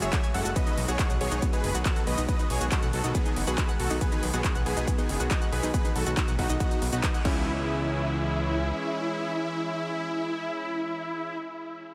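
Uplifting trance in a euphoric, soaring mood, this excerpt opens on the drop, with a punchy, overdriven electronic kick and a big-room dance kit of metallic hats, handclaps, shaker and crash driving forward until 7.3 s, while a fat, detuned analog bass sits beneath with sidechain pumping until 8.7 s. Up front, a dense, airy supersaw with vibrato and analog delay carries the melody and pumps against the kick, backed in the background by a lush, warbling vintage pad on sustained chords and a round, bright analog pluck spinning arpeggios with chorus, cassette tape colour and delay until 7.7 s. The dreamy mix is soaked in vast ambient reverb.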